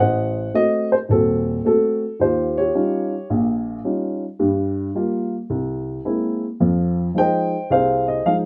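Sophisticated and swinging, this brief solo jazz excerpt in Eb mixolydian at 109 BPM features a dark, woody upright piano sitting up front in a close, detailed recording with light reverb, ranging from Eb1 to G5 across 8.5 seconds of chords moving from Adim7 through Eb9, Gm7 and Caug7 to Fm7.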